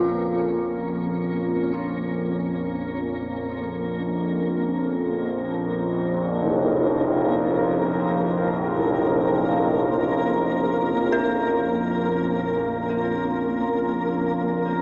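Dark ambient drone in free time and B-flat minor, this ominous excerpt rests on an up-front, evolving analog drone of sawtooth and pulse-width-modulated tones under chorus and phaser, while a deep, moody pad fades in from the background, an eerie, inharmonic FM bell traces mellow arpeggios through tape echo, a flickering, grainy granular texture also fades in, and a close, low-pass-filtered tam-tam sounds from 6.4 to 9.0 s, the mix sitting inside a wet cathedral reverb with a small-speaker character.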